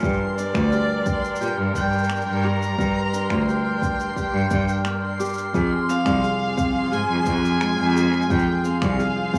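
Intimate and wistful, this folktronica excerpt moves at 87 BPM in a straight 4/4, shifting from G minor to F minor at 5.5 seconds. A fingerpicked nylon-string guitar with tape echo spins arpeggios over a veiled, con sordino string quartet holding sustained chords in the background, while a clear, bowed cello carries the bass up front and an overdriven electronic kick pairs with warm cabasa and finger snaps. A rich, distant violin enters with the melody at 0.4 seconds and a bell-like glockenspiel played with rubber mallets adds a second line at 0.7 seconds, both touched with tape echo, as a reversed, dreamy swelling texture drifts in the background of a small room.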